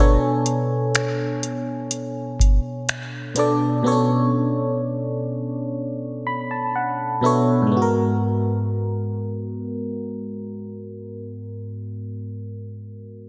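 A glassy FM electric piano opens this moody, late-night contemporary R&B excerpt, its bell-like attack decaying over a Bm9 chord, with a noise layer woven into its tone and chorus and phaser adding shimmer. At 62 BPM in a straight 4/4 and centred in G# phrygian, the piece unfolds slowly, the keys ranging from low register up into the treble. A booming analog drum machine sits up front from 0.5 to 3.6 seconds, with a deep kick, metallic hi-hats and finger snaps. The electric piano then carries on alone and plays a fill that leads into a shift to G#m9 at 7.7 seconds, opening a new section. Lush hall reverb soaks the whole mix, giving it a dreamy, floating atmosphere.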